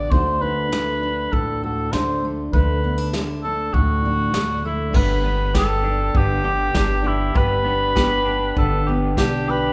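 A straight 4/4 folk pulse at 99 BPM in G major carries this gentle, hopeful passage, where a mellow cor anglais with light vibrato sings the melody up front over a bright, full-bodied fingerpicked steel-string acoustic guitar with audible finger squeak, a woody pizzicato upright bass and a roomy soft brush drum kit with a punchy kick, while at 4.9 s, as the harmony moves from D to G, a dark, slightly broken-up electric guitar through a small old amp adds lo-fi arpeggios colored by harmonic tremolo, heard within the moderate reverb of a recital hall.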